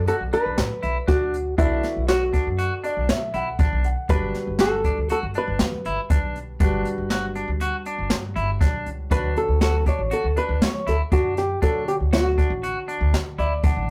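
A dark, compressed hollow-body jazz guitar, fingered and placed up front, carries the melody from the opening moment over a natural-sounding grand piano and a woody, thumpy upright bass played pizzicato on gut strings. This intricate, driving progressive instrumental moves in 5/4 at 120 BPM with a straight feel, and it is cut from a longer piece. The harmony shifts from Bm7 to Gmaj7 at 4.1 seconds and to Dmaj7 at 9.1 seconds. A bright electric guitar picks clean arpeggios, while a jazz kit played with brushes sits up front, its boomy kick, medium-tuned snare and hi-hat driving the band along. The intimate piano, with its action noise audible, supplies accompaniment and adds a couple of fills. The band sounds like a rough rehearsal-room take, with tube saturation and moderate small-room reverb.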